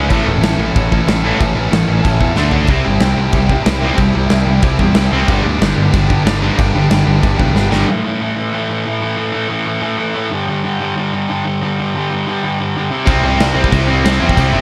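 A straight 4/4 punk rock pulse drives this upbeat, rebellious excerpt at 185 BPM, with a big rock drum kit pounding out kick, snare, toms and crash, its punchy kick and medium-tuned snare sounding dark and smooth in a big room, and fills snapping in at 2.4 and 7.6 seconds. Bright, direct picked electric bass anchors the low end, while three electric guitars stack up riffs: a double-tracked, high-gain distorted guitar, a cranked stack guitar with bright overdrive, and a sludgy, dark overdriven guitar sitting in the background. The opening passage moves through chords of A, D5, C and G before the harmony shifts to A5 and G5. At 7.9 seconds the band drops out and the sludgy guitar carries on alone, until the full group crashes back in at 13.1 seconds on a C chord. The mix is dry, with little reverb, giving the cut a raw, in-your-face punch.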